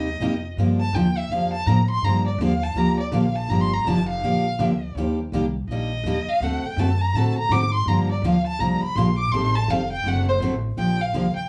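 Swinging and virtuosic, this short cut from a longer acoustic string-swing piece in the jazz manouche style moves at 165 BPM in G minor, with a bowed violin soloing expressively from 0.0 to 10.8 seconds, its vibrato and portamento up front. A bright, full-bodied picked steel-string acoustic guitar with fresh strings and audible finger squeak carries the accompaniment over a woody, thumpy pizzicato upright bass on gut strings. The trio sits in a small room ambience, heard from further back, with a short, wet studio reverb.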